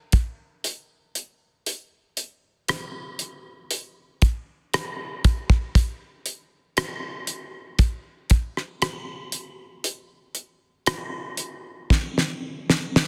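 Pop at a slow 59 BPM in a straight 4/4, carrying a longing, emotional mood. A damped 70s acoustic drum kit enters at 0.1 seconds, dry and up front, with hi-hat, rim clicks, a tight kick and a fat snare whose soft clipping gives it a slightly gritty edge. Light reverb and a dense, heavily limited modern master frame the kit, and a drum fill at 11.9 seconds closes this short excerpt cut from a longer piece.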